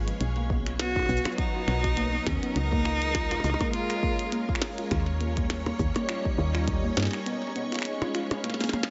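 IDM at 102 BPM in 4/4 with a swung sixteenth-note feel, this short, playful and glitchy excerpt sits in B lydian and moves through Bmaj7, A#m7/C#, D#7 and C#7. A soft string machine holds silky, mellow sustained chords under ensemble chorus and shimmer reverb, while a woody, round FM bass supplies a dark low end until 7.1 seconds. A warbling, lo-fi pluck with a detuned, dusty cassette-tape character spins arpeggios through chorus, tape echo and shimmer. A glitchy kit of finger snaps, clicky hats, a tiny snare, shaker and percussion blips runs through delay, joined by a deep electronic kick from 0.5 to 6.8 seconds, and a drum fill closes the passage at 8.4 seconds. Up front, a single bowed cello sings a clear, focused melody with vibrato between 0.8 and 4.6 seconds, all set in a lush hall reverb with a soft, rolled-off top end.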